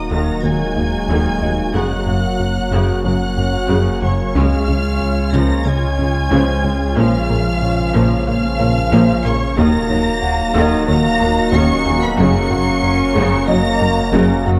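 Cinematic hybrid orchestral and electronic film score, relentless and tense, cut from a longer piece, with lush vibrato violins carrying a high melody over a second violin line, distant violas, very quiet cellos and double basses, a dark French horn section in the background and a very quiet, bright trombone section holding sustained chords. Beneath them, a deep, punchy sub bass with a pitch-drop attack and a rubbery, hollow square-wave bass riff anchor the low end, while an evolving, chorused analog drone sustains chords, a very quiet detuned analog pluck with a filter sweep spins arpeggios, and a soft felt-muted upright piano adds intimate texture with audible action noise. The dark production sits in a moderate scoring-stage reverb, cycling through Ebm, Gb, Db and Bbm.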